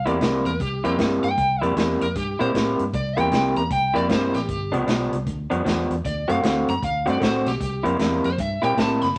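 Opening on an overdriven, hollow-bodied semi-hollow guitar melody treated with harmonic tremolo over a dark, round, foam-muted vintage fingered bass, this laid-back, gritty electric blues shuffle at 154 BPM swings as a slightly broken-up, lo-fi guitar riff through a small old amp and a vintage drum kit with dark cymbals and a punchy kick join at 0.1 seconds, moving through C7, G7, D7 and back to C7 in moderate studio reverb with vinyl crackle, all in a brief cut from a longer piece.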